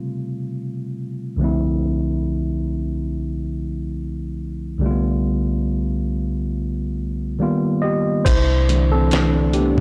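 A dry, gritty lo-fi hip hop excerpt at 70 BPM in C major, nostalgic and cosy, opens with a worn, slightly out-of-tune tine electric piano alone through cassette tape and a low-pass filter, a filter sweep running across its chords until 8.3 seconds. At that point the piano takes a solo over a C69 chord as a thumpy, fat-snared sampler-style drum kit and a woody pizzicato upright bass come in up front, while a silky, warbling string machine with ensemble chorus holds soft chords in the background until the cut at 9.8 seconds.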